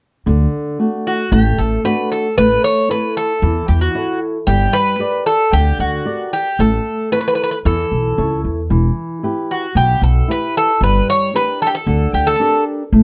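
Relaxed and sunny, this Greek folk excerpt in D major moves at 114 BPM in a straight 4/4, with woody, thumpy pizzicato upright bass and dark, thumb-plucked flamenco guitar starting at 0.3 seconds before a metallic, double-strung Greek bouzouki carries the melody up front from 1.1 seconds, all under light reverb as the chords pass through D, A, Gm and Em.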